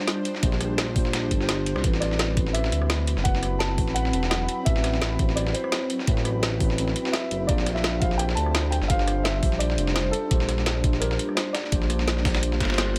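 A lightly swung liquid drum and bass groove opens this dreamy, lush passage, with an overdriven, knocking electronic kick and a smooth, detuned synth bass sitting up front from 0.4 s. A layered kit adds a woody snare, rim clicks and metallic hats, and a gritty, compressed sampler-style kit contributes filtered hats and snare. A mellow tine electric piano provides clean accompaniment alongside a shimmering, ethereal pad with chorus, reverb and sidechain pumping in the background, and from 2.0 s a dark, boxy grand piano carries the melody through dub echo in an otherwise dry mix.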